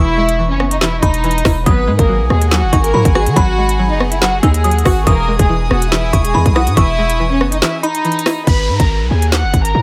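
A dry, up-front mix opens this short cut from a drill track at 141 BPM, felt in half-time, in G# minor, with a tense, cold mood. A studio violin section carries the melody from the start, bowed sul tasto with a soft attack and a pure, floating quality, softened by a low-pass filter and trailed by digital delay. Around it, a glassy, crystalline FM synth bell with a warbling vintage tone plays a high second line, while a twangy, full-bodied resonator pluck with a sawtooth edge and filter sweep supplies the accompaniment, both treated with chorus. A punchy, heavy 808-style bass with a sine core and a noise layer anchors the low end, and the drill kit enters at 0.3 seconds with a hard-clipped kick, woody snare, crisp hats, handclaps and rim clicks. A studio string section holds sustained chords in the background from 1.7 seconds as the harmony moves between Emaj7 and G#m7. After a break at 7.6 seconds, an electronic downlifter arrives at 8.5 seconds to carry the closing bars.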